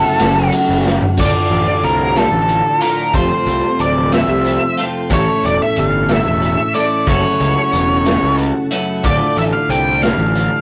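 A short cut from a longer psychedelic rock piece opens with a dark, distorted octave-fuzz lead guitar carrying the melody up front, while a bright, twangy twelve-string electric guitar picks a clean riff and a very quiet string machine with cellos holds mellow, sawtooth chords beneath. The mood is trippy and mysterious, set in a slow 6/8 with a straight feel. Just after the start, a gritty garage drum kit and an overdriven, fuzz-laden picked bass join, and a drum fill at 0.9 seconds leads into the main passage at 1.2 seconds. The kit has a punchy kick, a medium-tuned snare, crash, ride, hi-hat and toms, all sounding saturated with a rolled-off top in a small, pumping room. The harmony moves from F#m7 to Dm, A and back through F#m7 to Dm. The whole take has the rough feel of a rehearsal-room recording with moderate booth ambience and saturated warmth.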